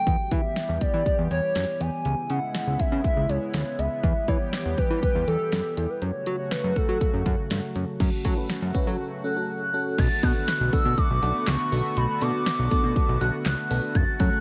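Nocturnal and driving, this synth-pop excerpt at 121 BPM pairs a hollow, woody clarinet-like synth lead with vibrato and chorus against a shimmering chorused pulse-width pad, a fat, saturated analog bass and a punchy, up-front house drum kit of kick, snare, handclaps, hi-hat and crash cymbal, while a dreamy FM electric piano with a soft pad layer, chorus and phaser joins at 8.2 s, a break arrives at 9.0 s, and the harmony settles into B minor on a Bm7 at 10.0 s, all in light digital ambience.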